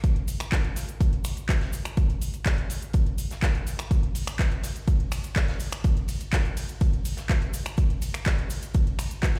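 House groove at 124 BPM in straight 4/4, a hopeful, uplifting percussion-only passage cut from a longer piece and running about 9.4 seconds. A deep, overdriven electronic kick sits up front, layered with a produced house kit of finger snaps, handclaps, metallic hats and ride cymbal, while a gritty, saturated acoustic kit with a medium-tuned snare and filtered hi-hat stays in the background beside a grainy, bright cabasa. The whole groove sounds as if played on a big sound system in a bare room, wrapped in a large studio reverb.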